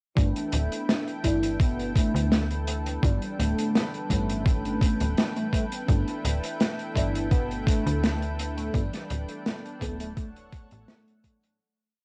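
Nostalgic and dreamy, this short vaporwave piece settles into a slowed, straight groove: a thumpy sampler-style electronic kick and a crunchy, gritty breakbeat kit of snare and closed hat sit up front, while a snappy FM slap bass with a metallic attack plays a syncopated riff. A mellow FM electric piano, treated with phaser, chorus and delay, holds rootless chords with syncopated pushes beneath a thick, airy unison pad, and from 1.2 seconds a velvety synth lead with tremolo and tape echo adds short phrases. The whole piece carries the character of a home cassette recording in a modest room, and it fades out from 7.8 seconds.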